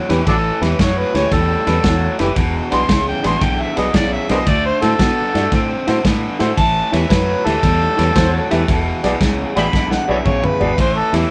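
A gritty, overdriven harmonica leads this laid-back electric blues shuffle, its amplified, up-front solo line carrying light vibrato, scooped notes, tongue slaps and a jazz-style phrasing from 0.3 seconds on. Beneath it, a bright, picked overdriven electric guitar works a riff in A mixolydian at 114 BPM in 4/4, swung on the eighths, while a clear, woody upright piano fills in polished accompaniment. A round, foam-muted fingered electric bass and a punchy, saturated soul drum kit with dark cymbals, a medium-tuned snare and a rolled-off, muffled top give the groove its lo-fi weight, with a drum fill arriving at 9.7 seconds. Briefly, at 8.2 seconds, a twangy, slightly broken-up second guitar through a small old amp adds a short line. The chords move through A9, E9, D9, A7sus2 and E9 before returning to A9, all captured as a band playing live in one room with moderate studio reverb, in this passage cut from a longer piece.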